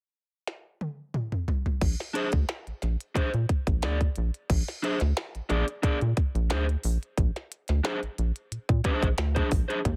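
A dry, close-sounding funk clip, cut from a longer piece, with a playful, energetic mood. A minimal electronic drum kit with a tight kick, tiny snare and clicky hats opens with a fill at 0.5 seconds. A rubbery, hollow square-wave bass with a dark, resonant filter pluck enters at 1.8 seconds on a Bb7 chord, and a crunchy overdriven electric guitar follows, picked and up front, before the harmony moves to Bb9 at 4.5 seconds.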